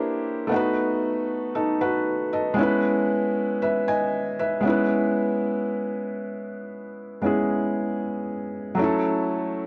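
R&B at a slow 58 BPM in 4/4 with a straight feel, this brief excerpt in E major carries a dreamy, romantic mood. A felt-muted upright piano plays solo throughout, ranging from F#3 to G#5. Its tone is soft and mellow, with thin felt dulling the hammers and audible action noise adding an intimate, close-up quality as the instrument sits up front. A moderate plate reverb with a 2.8-second decay lends a gentle halo around the notes. The harmony moves through C9, B7 and E6, settling onto F#m7 near the end at 8.8 seconds, across two sections that divide at 4.6 seconds.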